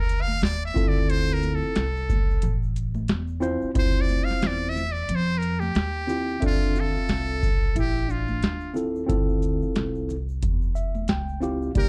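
A buzzy, metal-muted trumpet with slapback echo solos through the first 6.4 seconds of this cool, nocturnal jazz-hop fragment at a swung 90 BPM in D minor, over a woody pizzicato upright bass, a booming, dry analog drum machine with a deep kick and metallic hats, a worn, slightly out-of-tune tine electric piano in plate reverb that plays a closing fill, and vintage shaker and congas in the background, while a dark, clean, fingered electric guitar enters at 6.4 seconds with spring and plate reverb.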